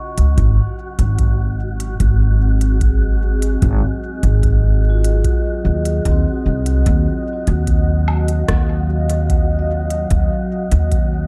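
A woody, thumpy upright bass sits up front in this hazy, deep ambient dub, entering at 0.2 s with dark pizzicato notes warmed by tube saturation. Beneath it, a deep electronic kick with analog, tape-warm weight anchors a straight 4/4 at 74 BPM, while a lighter organic electronic kit adds crisp hi-hats, rim clicks and woodblock, re-recorded in a large room. A mellow vibraphone played with soft mallets spins ringing, metallic arpeggios, roughened by vintage 12-bit sampler grit and trailed by tape echo. A moody, detuned sawtooth pad holds sustained chords with chorus and built-in reverb, and an airy, breathy wind-like noise texture drifts on a single tuned pitch in the background. The harmony moves from Ab7 to Ebmadd9 at 6.9 s in this short cut from a longer piece, and the overall mix stays fairly dry.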